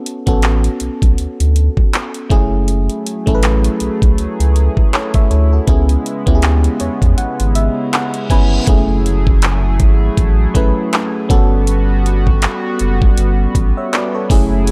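Dark digital ambience wraps this moody contemporary R&B excerpt in F# minor at 80 BPM, its swung sixteenths carrying a feeling of longing. A glassy, bell-like FM electric piano with chorus opens on a rootless Gmaj9#11 chord and is joined almost at once by two up-front parts: an electronic drum kit with a knocking kick, metallic hi-hats and handclaps, and a deep, saturated sub bass. A shimmering, retro pulse-width pad then enters at 2.7 seconds with sustained chords, and the piano plays a fill before a reverse cymbal leads into an electronic impact at 8.7 seconds, opening the second section as the harmony moves from F#m9 back to Gmaj9#11.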